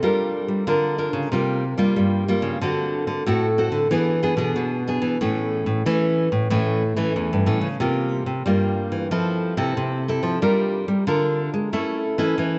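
A fingerpicked classical nylon-string guitar carries the warm, squeaky accompaniment up front while a second, full-bodied nylon-string guitar with fresh strings plays the bass in this nostalgic, yearning samba and choro passage at 92 BPM, both bathed in a vast cathedral reverb with nothing above 8.0 kHz as the harmony moves from Gm7 through D7 and E7 to A across 12.6 seconds cut from a longer piece.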